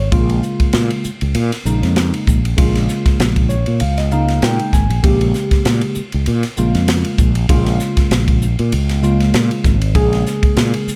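A tine electric piano, clean and phased through a combo amp, and a warm, direct fretless bass open this slick, driving jazz fusion excerpt over a swung 4/4 groove on a minor seventh chord. A crisp, polished acoustic drum kit with an airy studio-room sound, a high-tuned snare, a punchy kick, hi-hat and ride cymbal joins at 0.1 seconds, sitting up front with the bass. The electric piano plays a fill from 3.2 to 5.0 seconds, and the whole short passage is dry, with little reverb.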